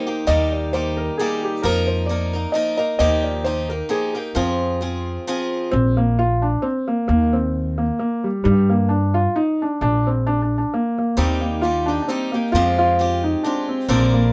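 Spirited and a little wild, this Celtic folk waltz in 3/4 carries a light swing, and this fragment is cut from a longer piece. A felt-muted upright piano carries the melody throughout, its soft, mellow tone sitting up front with an intimate feel. A bright, boxy acoustic guitar picks a swing-style accompaniment with audible finger squeak, dropping out at 5.7 seconds as the music moves into a second section and returning at 11.2 seconds. An upright bass joins at 0.3 seconds, plucked on gut strings with a woody, thumpy low end. Light reverb gives the close, small-ensemble sound a touch of space.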